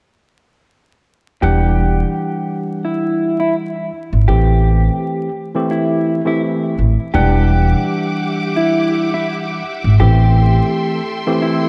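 This moody, tough hip hop excerpt opens at 1.4 s with a dark, clean fingered electric guitar carrying the melody over a worn, slightly out-of-tune electric piano, lightly overdriven through a combo amp, while a thumpy, woody pizzicato upright bass sits up front beneath a swung groove cycling between Em9 and Am7. At 7.1 s a focused, close bowed string section joins with sustained chords rich in vibrato, and the bass drops out at 10.6 s. Everything floats in a dreamy mix soaked in lush hall reverb and dusted with vinyl crackle.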